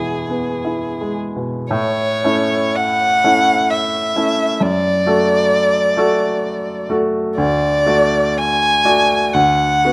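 Close, detailed microphones place a warm, expressive violin and a clear, polished baby grand piano up front in a moderate recital hall reverb. This tender, lyrical romantic duo in A major moves in 3/4 at a rubato 55-66 BPM, with the single bowed violin singing the melody with soft attacks, vibrato and portamento over the present piano accompaniment. Cut from a longer piece, the passage opens on E and moves into a new section at 1.7 seconds, its harmony passing through A, D/F# and D before reaching Bm/D at 9.3 seconds.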